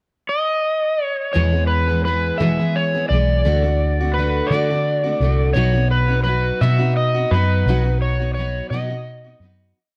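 Folk rock and heartland rock in a jangly, nostalgic 6/8 at 57 BPM, where an up-front overdriven slide guitar opens at 0.3 seconds with motif-based hook phrases, a full-bodied dreadnought acoustic strums sixteenths in open chord shapes, and a round, punchy hollow-body short-scale bass arrives at 1.4 seconds with a dotted figure, all moving through E, D and B in a dark production with light reverb before the fade-out begins at 7.7 seconds.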